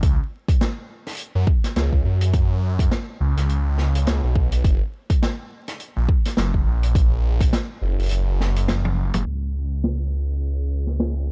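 Glitch hop at 104 BPM with a swung sixteenth feel, playful and swaggering, built on a thick, swirling phased detuned saw bass with tube saturation up front beside a punchy, layered electronic kick that stops at 7.5 seconds, while a vintage drum kit's hi-hat, snare and toms sit lower in the mix with a low-pass-filtered, rolled-off top and land a drum fill at 8.7 seconds before a filter sweep carries this dark, dry, vinyl-crackled excerpt from 9.3 seconds.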